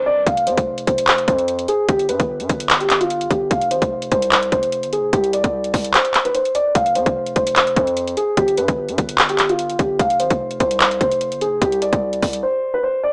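A half-time trap beat at 148 BPM drives this eerie, menacing hip hop excerpt, with a hard-clipped kick, metallic hats and handclaps sitting up front and the kick dropping out briefly at 5.9 seconds before the drums fall away at 12.4 seconds. A dark, boxy grand piano carries the melody through a low-pass filter sweep and tape echo over chords moving between F5, G and Csus2, while a distorted, saturated 808-style bass adds heavy, aggressive weight underneath. The sound is dry and gritty with light reverb and a small-speaker character.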